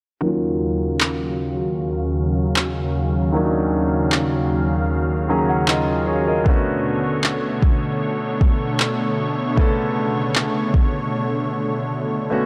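Sensual and longing, this contemporary R&B passage, cut from a longer piece, sits in a dark production with light reverb. A polished concert grand piano with brilliant upper notes and deep bass plays the accompaniment through a low-pass filter, up front beside a thick, detuned sawtooth-and-square unison pad that holds sustained chords with a slow attack, long release and chorus. An electronic drum kit with a soft kick and handclaps comes in at 1.0 seconds, overdriven and sounding as if re-recorded in a small room. The piano takes a fill starting at 4.9 seconds, and the harmony then moves from Ebm9 to Bm9. A filter sweep runs across the whole passage, and the drums drop away for a break at 11.1 seconds, leaving piano and pad to finish.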